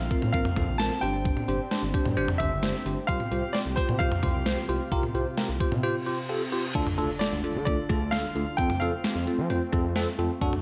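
A straight 4/4 pulse at 131 BPM drives this cool, nocturnal synth-pop excerpt in D minor, carried by a clean 12-bit drum machine up front with thumpy kick, medium-tuned snare, hi-hat, toms, cowbell and crash, overdriven and wrapped in gated reverb as if re-recorded in a large room. A smooth, wave-folded sawtooth bass glides with portamento and vibrato beneath a detuned, softly attacking analog pad in the background, while a bell-like tine electric piano through a phaser and a brilliant, short-sustained grand piano melody with digital delay sit over suspended chords moving from Bbsus2 through Gsus4 to Csus4. A silent gap at 5.8 seconds is broken by a reverse cymbal from 6.0 seconds that leads into an electronic impact at 6.8 seconds, where the harmony turns to Dm and then F, all under a light reverb and a dark, rolled-off top end.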